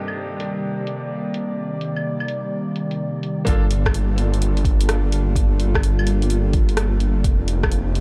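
A dreamy, reverb-soaked haze hangs over this ghostly, nocturnal future garage excerpt in G minor, set at 127 BPM with a 16th-note swing, where a warbling, nostalgic tape-like pad with chorus, phaser and 12-bit sampler grit pumps under sidechain while a bright, woody, slightly detuned upright piano with delay and a very quiet, breathy wind-like noise layer drift through the opening until about 3.5 seconds. An overdriven deep house kit of claves, hi-hat and rim click, filtered and re-recorded in a small room, ticks along from the start, and at 3.5 seconds a menacing, detuned saw bass with a filter swell arrives up front alongside a deep, overdriven electronic kick as the chords move from Cm9 to Gm9 and on to F7sus4.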